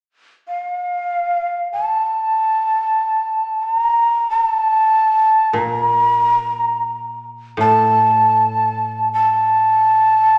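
Austere and calm, this short passage of Japanese chamber music drifts in free time. A breathy, mellow shakuhachi carries the melody close and up front from 0.5 seconds, its straight tone marked by a crisp, chiffy attack. At 5.5 seconds a woody, fingerpicked koto joins low in the background as accompaniment, and the music slows from 8.0 seconds, all set in a moderate recital-hall reverb.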